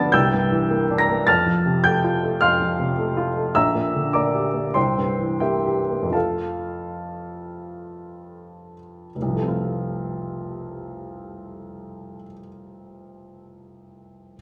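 A woody upright piano plays alone throughout this brief passage, its natural tone and long sustain placed up front. The music is a romantic character piece in F major and 4/4, passionate and warm in mood, moving with a free rubato feel between 76 and 106 BPM. The harmony opens on a C9 before settling onto F, then passes through Gm/Bb and C7 before returning to F, while the playing spans a broad range from F1 to Bb6. The tempo slows from about 2.4 seconds until the opening passage closes at 9.2 seconds, when a new passage begins. A reverberant recital hall surrounds the instrument with a lingering glow, and the recording is cut from a longer piece.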